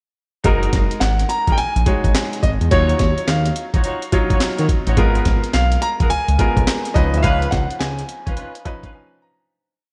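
A slick, confident new jack swing groove opens with a gritty, pitched-up sampler drum kit whose hard-swung beat layers snare with handclaps over a thumpy kick, together with a smooth, detuned sawtooth synth bass bouncing up front with muted ghost notes and chromatic approach notes, a polished concert grand playing pushed chords with short fills, and a mellow horn section tucked behind with soft, syncopated stabs. From 1.0 seconds a second, intimate grand piano carries a hook-based melody, its action noise audible, as the chords move through rich ninth harmonies. The track fades from 7.2 seconds, and a piano fill closes the brief break at the end.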